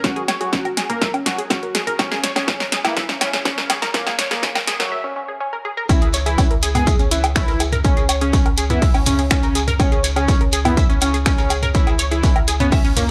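A small room reverb and light ambience give this excerpt of dramatic, cinematic melodic techno a close, contained sound, and its straight 4/4 pulse moves at a steady, driving pace. From the start, a fat, warbling analog lead with a detuned sawtooth and square-wave tone and a sub octave carries the melody under a filter sweep, while a tight sequenced synth spins mellow, filter-plucked arpeggios, both softened by chorus and delay and pumped by the sidechain. A heavy, layered electronic kick sits up front beside a punchy, overdriven analog drum machine of snaps, hi-hat, snare, toms and woodblock, and a drum fill runs through the build-up until a short break at 4.9 seconds. The drop lands at 5.9 seconds as the harmony moves from F#add9 to C#m, bringing in a round, deep analog bass holding C#2 with a dark, sustained tone. Joining it there, a very quiet vintage drum kit adds natural hi-hat, shaker and a medium-tuned snare, and a grainy shekere rustles in the background.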